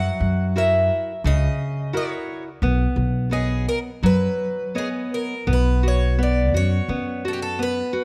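A shimmering, octave-doubled twelve-string guitar carries the mournful, passionate melody of this fado-style ballad in B major, moving in a rubato 86 BPM over a full-bodied fingerpicked nylon-string guitar and a woody pizzicato upright bass, all close and up front in a concert hall's moderate reverb, with finger squeak from both guitars, the bass dropping out at 7.8 seconds of this short cut from a longer piece.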